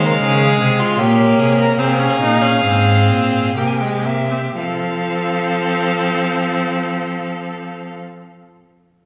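In a straight triple metre, this short passage from a longer baroque-style fugue for string quartet gradually slows over its first 4.6 seconds, giving it a serious, solemn gravity. The first violin carries the melody in a close, smooth, even tone with vibrato. A second violin sounds more distant beneath it with its own line, while the viola supplies steady bowed accompaniment in the middle register. Anchoring the group, the up-front cello plays the bass with an expressive, rich vibrato and gliding portamento. The harmony moves from Db through Gdim/Bb and Fm to a C7 that resolves onto F as a new section begins at 4.6 seconds. A generous scoring-stage reverb places the listener further back in the hall, so the strings bloom into a spacious, resonant wash.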